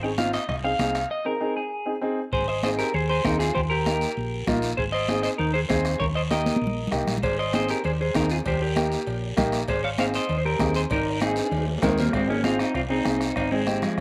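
Cumbia with a sunny, danceable lilt, this short slice of a longer piece moves at a brisk straight four-beat pace and sits dry, as if played in the open air. An up-front clean electric guitar carries the melody with a picked, spring-reverbed tone and slapback echo, while a woody upright piano with long sustain fills in the accompaniment. Underneath, a dark, round hollow-body electric bass anchors the low end. The percussion enters at 0.2 seconds: bright, damped congas played with soft hands, a raspy, saturated guiro, and a distant, soft-beatered bombo set back as though in a large room. Ringing metal-shelled timbales and cowbell, also distant and touched by slapback echo, sound briefly before a break and then return at 7.2 seconds after a drum fill, with a second fill steering the music back to its opening section near the end.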